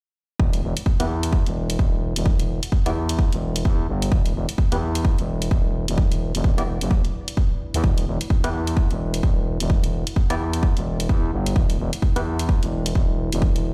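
Swaggering, gritty bass house excerpt with swung sixteenths, built on a punchy, tape-warm electronic kick up front and a layered electronic hi-hat, a thick, growling FM bass with tube saturation and sidechain pumping, hollow organ-like stabs with subtle chorus and delay, and a very quiet, deep, moody ambient pad drifting in at 2.6 seconds, all heard as if played on a big sound system in a bare stone room.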